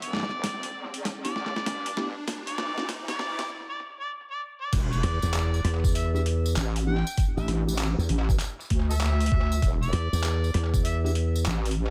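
A 16th-note swing at 98 BPM in 4/4 drives this swaggering glitch hop excerpt in E minor, where a gritty overdriven harmonica solo with scooped notes, tongue slaps and light vibrato rides tape echo over a heavy, detuned wobble bass up front, a pitched-down boom bap sampler-style drum kit with crash, handclaps, hi-hat, rim click and snare, a thumpy electronic kick drum arriving at 0.4 s, and mellow tine electric piano stabs pumping quietly in the background. Meanwhile a background riser builds through a drum fill, a brief break follows, and an impact marks the drop at 4.7 s, where a jingly tambourine and a growly, punchy slap bass with an envelope filter (from 5.0 s) join over E7(no3) and A7sus4 chords in an echo-heavy mix.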